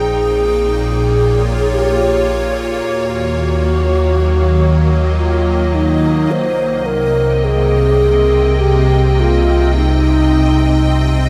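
An evolving, detuned wavetable pad, bright and up front with ensemble chorus and its own reverb, opens together with a deep, round sine sub bass and an airy, close-miked alto flute carrying the melody with vibrato and an unsteady tone through diffuse ambient delay. This weightless, luminous ambient fragment, cut from a longer piece, drifts at 52 BPM in 3/4 over Bbm and Ebm chords, shifting to Cm at 6.3 seconds. A huge, wet reverb with an 8.2-second tail bathes the whole sound.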